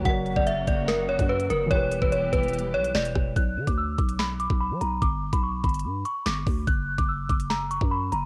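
A dark, mellow concert grand piano and a bowed chamber string section with vibrato and a soft attack open this menacing, tense drill cut together with a growling 808-style bass. A half-time feel at 145 BPM sits in B harmonic minor over chords moving from F# to Em. The piano sits in the background, and both it and the strings carry a vintage cassette tape colour and drop away by 3.4 seconds. From there, a Bm, G and F# progression carries the second section. Up front, a metallic, inharmonic FM bell carries the melody with a long ringing release, treated with chorus, a low-pass filter, tape echo and cassette tape. A buzzy bass with transformer saturation and a produced electronic drum kit continue to 8.3 and 8.2 seconds respectively. The kit features a knocking kick, sharp snare, crisp hats, rim clicks and finger snaps under light digital reverb, with a lo-fi home-cassette character.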